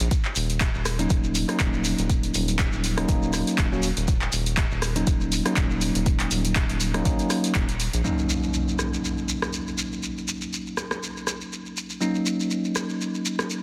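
Smooth and hypnotic, this deep house excerpt moves at 121 BPM in 4/4 with a light 16th-note swing, sitting in Eb minor on a single Ebm7 chord. A round, dark analog bass holds the low end from Eb1 to Bb1 with sidechain pumping until 8.0 seconds, alongside a deep, layered electronic kick that drops out just before, at around 7.7 seconds. A punchy, tape-warm analog drum machine supplies handclaps, hi-hat and rim click with a small-room character, while a grainy, close and dry shekere adds mellow texture throughout. From 1.0 seconds a bell-like tine electric piano plays bright, up-front stabs between Gb3 and Gb4, treated with delay and sidechain pumping. At 8.0 seconds an electronic impact marks the shift into a sparser second section, where the drum machine, shekere and electric piano carry on. Light reverb and vinyl crackle sit over a dense, heavily limited modern master.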